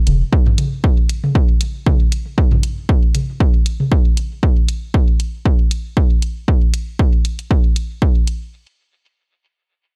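A punchy, dry analog kick drives this nocturnal, hypnotic dub techno excerpt at 117 BPM in 4/4 with a 16th-note swing, under a faint hi-hat, while overdriven electronic toms, pumping against the sidechain and trailing dub echo with a small-room tone, drop out at 3.9 seconds in an echo-heavy mix with little reverb.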